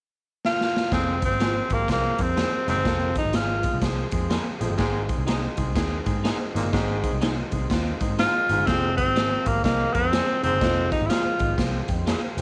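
A breathy, intimate tenor saxophone with scooped notes and vibrato leads this driving, passionate uptempo 1960s-style soul excerpt in F minor at 124 BPM with a swung feel, entering at 0.5 seconds during a drum fill on a gritty, punchy garage kit, over a round, foam-muted bass with tube saturation, a baritone saxophone riff, clear grand piano, a faint slow-rotary tonewheel organ, slightly broken-up lo-fi guitar stabs with ensemble chorus, and light reverb.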